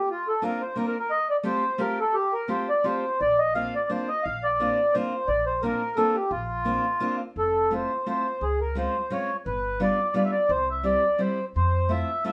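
A reedy, mellow accordion opens this whirling, nostalgic musette waltz at 173 BPM in swung 3/4, carrying the melody up front with a slow-beating tone-chamber voice, joined at 0.4 s by a full-bodied fingerpicked steel-string guitar whose finger squeaks add an intimate touch. A woody, thumpy upright bass on gut strings enters at 3.2 s, playing dark pizzicato, before the tune moves from Bb major to F major at 7.4 s through a colourful chord run toward G7 and C. The band plays live together in one room, wrapped in a wet studio reverb, and the passage is cut from a longer piece.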